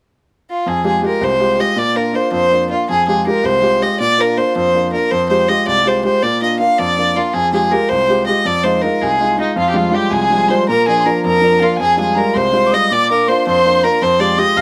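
Celtic folk jig in 6/8 at 108 BPM in F dorian, wild and spirited, cut from a longer piece, with a single rich, focused fiddle carrying the bowed melody up front, its light vibrato bathed in plate reverb. A brilliant, woody upright piano with a vintage character accompanies from 0.7 seconds, moving between Fmadd9 and Bb with a single turn to Fm7 before the tune repeats. At 9.4 seconds an airy metal tin whistle enters on a tongued second line with audible chiff and vibrato, all set in a moderate studio room.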